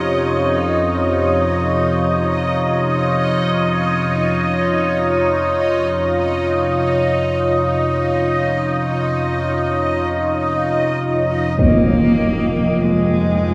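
A deep, moody pad sustaining a Dbadd9 chord with shimmer reverb opens this unsettling, cavernous dark ambient drone in free time, over a warbling, wave-folded analog drone and a bright, resonant stepped-filter texture that bubbles above, all bathed in a cathedral reverb until at 11.6 seconds a huge, dark impact lands as the harmony shifts to Fm7 and a single focused, bowed cello with vibrato and tape echo enters up front.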